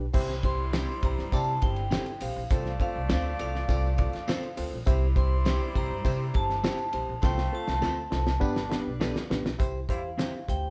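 Warm and uplifting, this cut from a longer piece is uptempo 1960s-style soul at 102 BPM in 4/4 with a straight feel, set in C major. Bright, ringing vibraphone struck with hard mallets carries the melody from 0.5 seconds, its slow motor vibrato giving an airy shimmer high above the band. Underneath, a reedy, barky electric piano with light overdrive through its built-in speakers comps alongside a woody, dark pizzicato upright bass. A tight, clear saxophone section with light vibrato supplies a jazz-style second line, while a twangy, slightly broken-up electric guitar adds compressed stabs from the background and a jingly tambourine sits close and dry behind them. The cloth-damped drum kit is thuddy and up front, with a fat snare, tight kick and dark cymbals, and it plays a fill from 7.2 seconds as the chords move from C and F/C to G before resolving to C at 9.6 seconds, all captured live in one room with light reverb.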